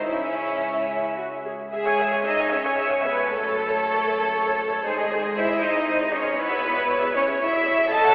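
A quick classical-period movement for string orchestra in a lilting 6/8 with a rubato feel, this short passage cut from a longer piece sounds lively and graceful, with harmony moving from C# minor through F# minor and G# before settling on C# minor over E. A dark violin section carries the melody from a chamber setting, sitting in the background with soft-attacked sul tasto bowing and vibrato. A second violin section, warm with light vibrato, joins at 0.1 s on its own line, while a dark, pure-toned viola section floats up front with its accompaniment. Beneath them, a cello section with light vibrato and a rich, soft-edged double bass section share the bass, all of them bowed sul tasto for an intimate, smooth surface. The sound is bathed in a wet concert-hall reverb yet filtered through a narrow telephone-like tone, giving the strings a veiled quality.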